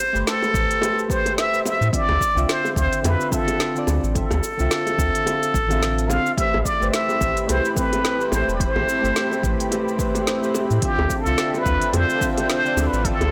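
A swung sixteenth-note groove in 4/4 drives this relaxed sunset chillout excerpt. It is built on a punchy, overdriven electronic kick and a deep house kit of cabasa, smooth hats and a woody snare, with tight, high-tuned bongos played with soft hands in the background. A round sine sub bass with transformer saturation anchors the harmony as it moves between Am9 and Dm9, while gentle, wave-folded electric-piano-like synth keys with chorus and tape echo fill in the accompaniment. Up front, a trumpet with plunger mute plays a jazz-style solo melody with scooped notes and a vintage wah-wah tone, trailed by tape echo. At 6.4 seconds a lush, detuned sawtooth unison pad enters with chorus and phaser, adding bright sustained chords. The whole recording sits in a moderate recital hall reverb and sounds blown-out and overdriven.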